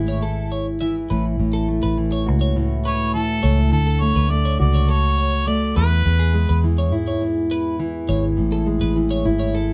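A light reverb gives this short cut from an easy-going, carefree pop tune at 103 BPM in A major the feel of a band playing live in one room, with a full-bodied fingerpicked steel-string acoustic guitar and a round, punchy, foam-muted electric bass sitting up front from the start. A bright, clean twelve-string electric guitar adds compressed arpeggios from 0.1 seconds. A smooth harmonica with light vibrato carries the melody between 2.9 and 6.6 seconds over chords moving from Amaj7 through F#m7/A, Dmaj7 and E before returning to Amaj7.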